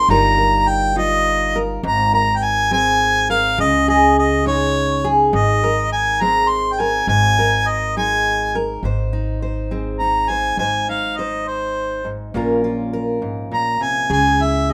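A warm harmonica with light vibrato carries the melody up front, its distant, roomy tone lending a pastoral, nostalgic air to this acoustic folk piece in Ab major, moving at an unhurried 69 BPM in 6/8. Beneath it, a fingerpicked steel-string acoustic guitar with a full-bodied, woody sound from old strings lays down accompaniment over suspended and added-ninth chords, while a pizzicato upright bass adds a growly, thumpy low end. Light reverb softens the blend, and at 8.8 seconds the harmony shifts toward plainer chords, drifting to Bbm and Dbm before this cut from a longer piece ends.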